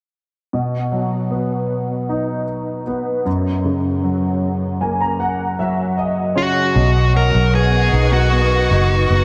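Soaked in a huge, dreamy reverb with a dulled top end, this tender, heartfelt pop passage opens on an intimate concert grand piano that moves from B to F#. The piano has audible action noise, deep bass and long sustain under an ensemble chorus, and it plays a fill from 4.4 seconds. At 6.4 seconds a dark, overdriven picked lead guitar takes up the melody, and at 6.8 seconds the harmony settles on Badd9 as a foam-muted, round, punchy electric bass joins up front, with a bowed studio string section in the background, expressive with vibrato and portamento.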